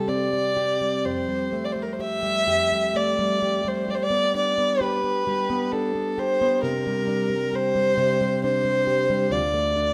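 A dark, woody solo fiddle and a fingerpicked, plugged-in steel-string acoustic guitar begin together in this short cut from a longer Celtic slow air, moving in a rubato 3/4 at roughly 61-67 BPM with a longing, haunting mood. The bowed fiddle carries the melody up front with light vibrato and a close presence, while the full-bodied jumbo guitar, warm with fresh strings, supports it from the low register through chords that pass from C5 and Fadd9 to G, Csus2 and finally Dm near 9.3 seconds. A moderate recital hall reverb gives both instruments a gentle sense of space.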